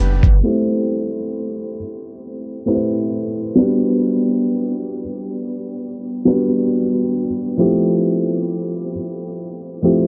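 A felt-muted upright piano opens this cosy, mellow hip hop fragment at 67 BPM, its soft, intimate tone sitting up front with audible action noise as it plays through Am7, Gmaj7 and Fmaj9 on a lightly swung 16th-note feel. The dreamy mix is soaked in a huge ambient reverb, dusted with vinyl crackle and dulled by a low-pass filter, with a filter sweep running from 0.4 seconds to the end at 10.1 seconds.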